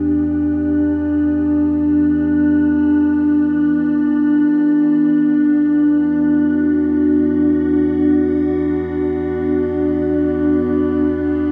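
A vast, echoing cathedral reverb with a long tail surrounds this reflective, melancholic ambient excerpt in free time and E minor. Up front, an evolving wavetable pad with a detuned, morphing triangle tone holds sustained chords through chorus and its own reverb. A filter sweep runs through the pad as the harmony shifts from Em7 to Bm/E at 4.4 seconds, while a deep, round sine sub bass sits softly beneath on E for the full 11.5 seconds.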